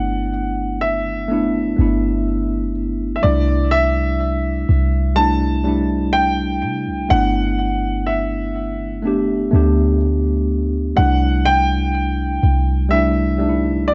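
Contemporary R&B at a slow 62 BPM, this tender, dreamy fragment of a longer piece drifts between G6 and C69 chords. A clear, intimate grand piano carries the melody up front with audible action noise and a touch of delay, while a slightly out-of-tune tine electric piano supplies worn accompaniment and a deep, boomy 808-style bass with a sine-like, decaying tone anchors the low end. The whole recording sits in light studio reverb and carries the warbly pitch drift of old cassette tape, its top end rolled off above 7.8 kHz.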